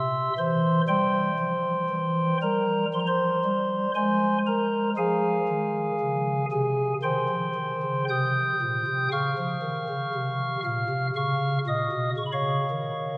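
A solo pipe organ on a stopped flute register opens on a C7 chord, sounding soft and hollow with an audible chiff. This is a dark, grave chorale-style classical passage in F minor, moving at a slow 59 BPM in a straight 4/4. The harmony settles on F minor at 2.9 seconds, then moves through C minor, a rootless B-flat minor over D-flat, and finally D-flat 7. The mellow flute stops carry a baroque voicing that spans from the low Bb2 up to a high G6, and the organ sits up front in the sound. A long, wet cathedral reverb of 4.4 seconds surrounds it. The 13.2-second passage is cut from a longer piece and stops on the unresolved D-flat 7 chord.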